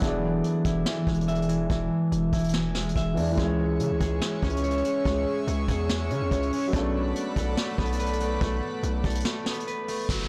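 Fingerpicked concert harp arpeggios ring up front through tape echo in this brooding, hard-hitting half-time trap excerpt at 143 BPM, backed by a dark, mellow grand piano with audible action noise, a saturated distorted 808-style bass, and a vintage brush kit with a punchy kick and a softly clipped snare, while an airy, breathy chorused pad enters at 3.4 seconds, the kick drops out at 9.3 seconds, and a downlifter closes the overdriven, blown-out recording at 10.1 seconds.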